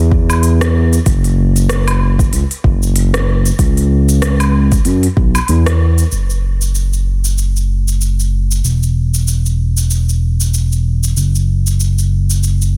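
A swung sixteenth-note groove in 4/4 drives this hypnotic, mystical slice of organic downtempo, cut from a longer piece. A smooth, gliding synth bass sits up front, its sawtooth and triangle tones wave-folded with vibrato, portamento and sidechain pumping. A deep, layered, overdriven electronic kick stops at 5.3 seconds, while a crisp organic electronic kit of hi-hat, rim click, shaker and woodblock, overdriven and set in a large room, plays on with the bass into a new section from 6.1 seconds, all in a dry, dense, heavily limited master.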